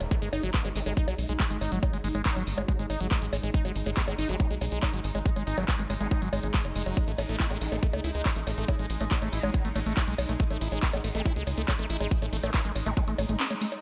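Psychedelic trance at 140 BPM in a straight 4/4, this driving, psychedelic excerpt is cut from a longer piece and sits entirely in a drop. An up-front electronic kick, tight and tape-warm, anchors the groove alongside a tight, punchy sequencer bass with a dark sawtooth-and-square filter pluck that stops at 13.4 s. A techno drum kit adds bongos, handclaps, warm hi-hats and ride cymbal, re-recorded in a large room. Above them, a squelchy, smooth liquid acid bass riff with a resonant filter sweep moves through phaser, dub echo and sidechain pumping. Deeper in the background, a nasal, saturated vowel-sweep wobble bass wobbles with formant-filtered sine tones, while a bubbling, detuned sawtooth texture holds sustained chords with random filter steps, chorus and built-in reverb. The harmony shifts from G#5 to A5 at 7.0 s, and a band accent lands at 13.4 s inside a digital ambience.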